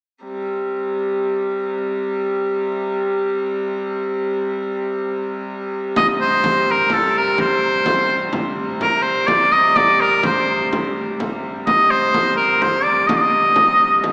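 Driving and ancient in mood, this medieval dance excerpt moves at 126 BPM in 3/4 with a straight feel in C minor. A rich, nasal hurdy-gurdy opens alone at 0.2 seconds, holding a wheel-bowed drone between C3 and G3 with an airy bow and a reedy edge, sitting up front. At 6.0 seconds a bright shawm enters with the solo melody in a folk style, its light vibrato giving the line a lively sheen even as it sounds distant and roomy. The frame drum joins at the same moment, deep and large, played with hard hands. A wet church reverb with a 3.2-second decay fills the space, while the overall sound has a small-speaker character.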